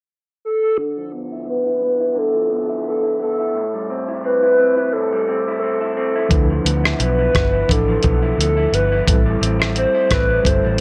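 A warbling, nostalgic lead carries the melody from 0.4 seconds, its soft-attack blend of square and sawtooth tones sitting up front, sustained with vibrato and softened by phaser, lush chorus and a low-pass filter. This hazy, wistful indie bedroom-pop fragment, cut from a longer piece, moves at an unhurried pace with a gentle swing. From 0.8 seconds, a dark, slightly broken-up electric guitar through a small old amp plays picked, lo-fi accompaniment with subtle chorus and a drifting pitch, as a filter sweep runs to the end and the harmony alternates between Dm69 and Am7. At 6.3 seconds, a reedy, mellow electric piano enters with fast tremolo and cassette-tape coloring through its built-in speakers. At the same moment, a round, punchy, foam-muted electric bass and a dusty, gritty sampler-style kit arrive, the compressed drums sitting up front with a thumpy kick, hi-hat and rim click. A moderate studio reverb gives the parts a modest sense of space.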